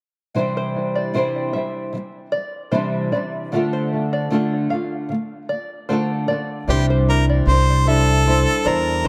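A clear, up-front harmonica with light vibrato and scooped notes takes the solo melody at 6.7 seconds, arriving together with woody pizzicato upright bass in this easy-going, carefree pop excerpt at 76 BPM with a slight 16th-note swing. Before that, a small-sounding, double-tracked nylon-string guitar fingerpicks the accompaniment from 0.3 seconds over Cadd9 and Dm, joined by quieter, twangy, plunky banjo arpeggios. Analog delay on the guitar, banjo and harmonica, plus a moderate spring reverb, gives the mix an echo-heavy sound.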